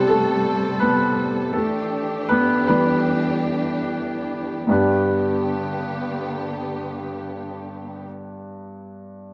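This uplifting, hopeful pop piece moves at 72-84 BPM in 4/4 with a light sixteenth-note swing in G major. A woody, open upright piano sits up front and carries the accompaniment, leading as a solo through the first 4.7 seconds while the tempo slows, over Am7 and Em7 before settling on G. Behind it, a distant, lush bowed string ensemble holds sustained chords with expressive vibrato and portamento until 8.1 seconds, all wrapped in a moderate spring reverb.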